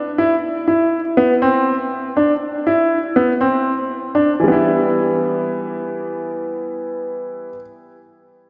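A straight 4/4 pulse at 121 BPM frames this cinematic, melancholic electronica fragment in E minor, tuned to A4 = 444 Hz and cut from a longer piece, where a smooth, vintage grand piano sits up front as the sole part from 0.2 to 7.6 seconds, moving between E3 and E4 from a C chord to E minor at 4.4 seconds, its notes trailed by a diffuse ambient delay and bathed in a lush hall reverb with a 2.8-second tail that gives the mix a dreamy, soaked quality.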